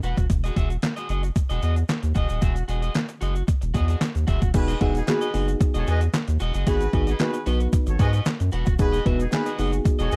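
A dark, dry, warm production frames this smooth, feel-good boogie-funk clip, cut from a longer piece, in E major at 113 BPM in a straight 4/4 and tuned to A4 = 435 Hz. From the start, a detuned 8-bit drum machine sits up front with a thumpy kick, fat snare, hi-hat, handclaps and crash, its overdriven, sampler-style hits re-recorded in a small room. Beside it, a deep, thick, saturated sine sub bass holds the low end, while an electric guitar at the edge of break-up picks a riff through lush chorus and a grainy egg shaker ticks in the background. At 4.5 s a distant, roomy horn section adds a second line with slapback echo, and a mellow FM electric piano joins with soft, round, chorused chords over a faint noise layer. The harmony moves from Emaj9 to G#m7 and back to Emaj9, giving the groove a smooth, warm glow.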